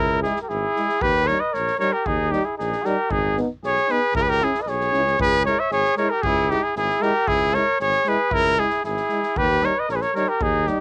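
Fiery and virtuosic, this short cut from a longer Balkan brass band piece moves at 115 BPM in a straight 2/4, rooted in C# dorian with a raised fourth and tuned slightly flat. An up-front trumpet with light vibrato carries the melody over a flugelhorn second line, a mellow euphonium and a background French horn with vibrato filling in the accompaniment, a smooth-topped tuba holding the bass, and an airy street-band drum kit with a boomy kick and a medium-tuned snare. The chords move from C#m through D# and G#m, and the whole piece has the light reverb of a home cassette recording, with tape coloring every part except the tuba.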